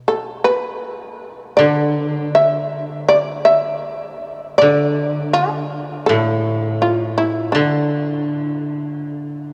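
Rubato and meditative around 81 BPM in 4/4, this solitary excerpt of Japanese traditional chamber music in D kumoi opens with a plectrum-plucked, fretless shamisen carrying the melody, its buzzing, percussive tone powerful and up front. At 1.6 s a dry, woody koto played with fingerpicks joins in a low accompanying register. A cathedral reverb with a long 5.9 s tail and a small room ambience surround the pair, all on worn cassette tape whose warbling pitch drift gives the sound an aged, wavering character.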